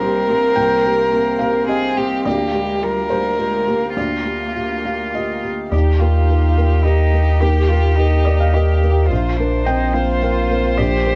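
In a rubato 3/4 at 107 BPM, this neoclassical piano and strings excerpt unfolds with a longing, reflective mood, cut from a longer piece and captured as a band playing live in one room under light reverb. A single muted violin carries the melody con sordino, its veiled tone shaped by vibrato and a soft attack, sitting close and up front. Beneath it, one muted cello plays a dark second line with vibrato and portamento, while a felt-muted upright piano gives mellow, intimate accompaniment up front, its action noise plainly audible. A reedy pedal harmonium holds breathing, boxy chords in the background, moving from Cm7 and Gm7/D to Ebmaj7 and Bbsus2. At 5.7 seconds a pure sine sub bass enters up front, deep, clean and smooth, with a fast attack and sustained notes that carry through to the close at 11.2 seconds.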